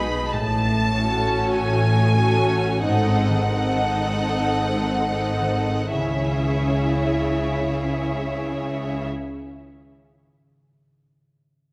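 In a rubato 4/4 pulse of 34-52 BPM that slows through the first 5.9 seconds, this yearning, melancholic slow romantic orchestral movement in C# minor, cut from a longer piece, carries a smooth, distant violin melody over a focused second violin line and a lush viola accompaniment, while a mellow, ringing, thumb-plucked harp arpeggiates in the background until 9.8 seconds and cellos and double basses hold a rich, bowed bass beneath, the harmony moving from F#m/A through G#7b9 to C#m within a moderate scoring-stage reverb.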